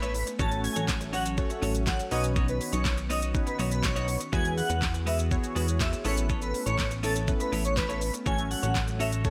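Carefree and summery, this short dance-pop clip moves in a straight four-four groove from start to finish. An up-front electronic pop kit sets the pulse with a knocking kick, fat snare, crisp hi-hats, handclaps and shaker, while a dark, glossy synth bass with a plucky filter and retro pulse-wave tone carries the low end under sidechain pumping. Round analog keys with detuned sawtooth voices, a filter sweep, chorus and phaser supply the accompaniment, and a clean, compressed twelve-string electric guitar picks a riff through the whole passage. Behind them, a soft, breathy pad with a noise layer and slow attack holds sustained chords in the background, with sidechain pumping of its own. On top, a bright, dreamy sine lead with vibrato, chorus, phaser and digital delay sings the melody until about 9.1 seconds, over a progression that moves from F#m/A through Badd9, Eadd9 and Aadd9 before returning to F#m/A, all set in light reverb.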